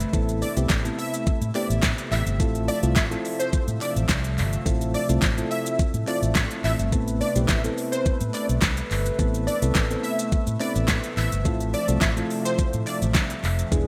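A knocking, up-front pop drum kit bathed in gated reverb, with a fat snare, crisp hats, shaker and handclaps, drives this bittersweet 106 BPM dance-pop excerpt, joined by a dark, foam-muted fingered electric bass, a shimmering, warbling pulse-width pad and soft, mellow electric-piano-like synth keys all pumping to the sidechain, while a catchy, detuned unison lead carries the melody from 0.4 s over Amadd9 and Fmaj7 chords, a very quiet, close group handclap sits beneath, and a lush hall reverb, bright 1980s-style digital sheen and faint mains hum colour the mix.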